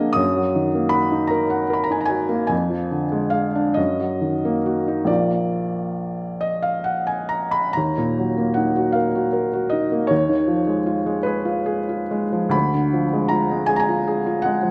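A soft, hushed piano sits up front in a moderate reverb that gives the close, intimate sound a gentle halo of space. This is a romantic classical nocturne for solo piano in Eb minor, a mournful and yearning fragment cut from a longer piece, moving slowly at 44-55 BPM in dotted quarters in 12/8 with free rubato. The felt-muted upright piano plays alone for the full 14.7 seconds, its mellow tone spanning from Bb1 in the bass up to Eb6. The harmony circles through Eb minor and diminished colors, settling on Bb at 5.1 seconds before returning to Eb minor. It ends unresolved on a Ddim7 chord at 12.5 seconds.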